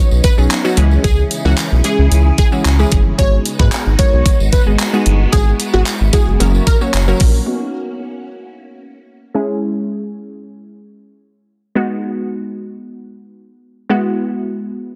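A straight 4/4 dance-pop pulse drives this upbeat, euphoric excerpt, where an overdriven pop drum kit with knocking kick, handclaps and hi-hat sits up front beside a deep, round analog bass pumped by sidechain, a jingly tambourine in the background and a silky string machine with phaser and ensemble chorus, while a punchy, detuned unison lead carries a catchy melody through the drop until 6.8 s and a crystalline wavetable pluck with chorus plays alone after 7.5 s under a filter sweep, all in a dense, dry, heavily limited modern master.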